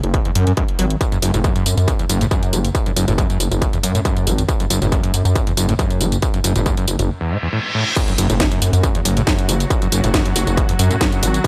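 Intense and hypnotic, this driving peak-time techno cut from a longer piece runs at 138 BPM in F# minor, built on a distorted, overdriven electronic kick up front, a gritty saturated synth bass pumping in F#1 to F#2, an overdriven drum kit with a cracking snare, hi-hat, tambourine, toms and crash, and a squelchy, screaming acid line with resonant filter sweeps, chorus and digital delay, until a reverse cymbal at 7.3 seconds leads into the drop at 8.0 seconds with an electronic impact, followed at 8.7 seconds by a swarming, detuned granular drone in the background.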